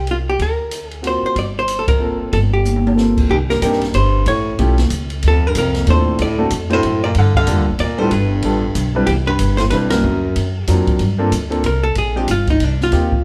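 Swinging in three, this moody, late-night small-group jazz fragment sets a woody, up-front pizzicato upright bass and a distant, roomy drum kit with dark cymbals and a boomy kick beneath a clean, picked hollow-body archtop guitar carrying the melody, while a grand piano with deep bass comps through altered and extended chords. A clear baritone saxophone with light vibrato and scooped notes adds a second line from 3.3 to 10.7 seconds, the band hits shared accents and the drums play a short fill, and the guitar takes a solo from 11.0 seconds until the cut. A large studio reverb surrounds the group playing live in one room.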